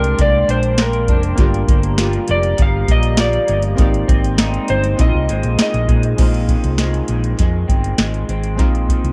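A soft vintage rhythm box sets a straight 4/4 pulse at 100 BPM, its deep kick, crisp snare and metallic hats up front beside a round, punchy hollow-body bass, in this dreamy, nostalgic slice of indie and bedroom pop. A slightly broken-up slide guitar carries the melody through chorus and dub echo until 6.0 seconds. Beneath it sit a lo-fi, compressed guitar through a small old amp with warbly pitch drift, pulse-and-sawtooth analog keys with a filter sweep, and a detuned, square-and-triangle tape-like pad that stops at 6.2 seconds, while the chords move from Bb13 through Gm7 and Abmaj7 to Bb9sus4 in an echo-heavy mix with light reverb and digital ambience.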